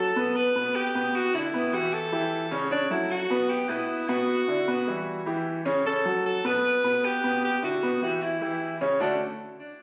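Latin piece with a warm, danceable mood, this short passage sets a clear, vintage-toned alto saxophone melody, touched by analog delay and played up front in a pop style, over a natural-sounding baby grand piano laying down arpeggios throughout. The harmony moves through chords such as Em7, A7, Bm11, C#dim and F#madd11 before settling on Dmaj7 at 9.0 seconds. Captured on a phone in a large studio, the sound carries a moderate reverb, and the clip is cut from a longer piece.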